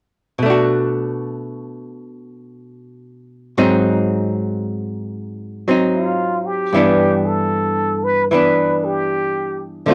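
Tender and romantic, this brief jazz ballad excerpt moves at 76 BPM in a swung 4/4 in G major. It opens with a dark, clean archtop guitar, hollow-bodied and picked up front, comping through Bm7, Ab7 and then G6. At 5.9 seconds a plunger-muted trumpet enters with a breathy, whispered wah-wah melody, full of vibrato and scooped notes, set in a roomy haze under light reverb and the soft grain of a home cassette recording.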